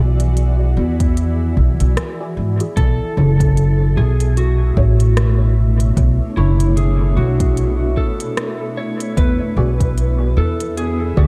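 A hazy, spacious stretch of ambient dub in B dorian, cut from a longer piece, moving at 75 BPM with a 16th-note swing as an up-front, woody pizzicato upright bass with tube saturation anchors a cloudy granular pad, muted dub chord stabs treated with phaser, lush chorus and dub echo, and a bubbling, resonant stepped-filter texture sitting in the background. Crisp hats and rim clicks from a tape-warm organic electronic kit arrive with dub echo, a deep electronic kick joins at 1.0 seconds, and at 2.8 seconds a slightly broken-up electric slide guitar, played with fingerpicks, enters with a dub-echoed melody as the harmony moves from E7 to Bm7. The production is dark, with light reverb and a digital ambience.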